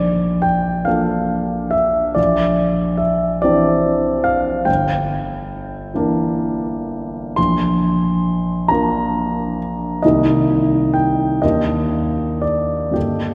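Set in a wet church acoustic with a long reverberant tail, this short fragment of impressionist solo piano music has a hazy, nocturnal mood. A clear, polished concert grand sits up front and intimate, its deep bass, long sustain and audible action noise all present as it moves in an unhurried, rubato 6/8 across a range from G1 to C6. The harmony drifts through extended colors, from Bbmaj7 and Cadd9/Bb to Gm6 and Bbadd9, reaching Cm7 at 10.0 seconds before settling on Ebmaj7 at 11.4 seconds.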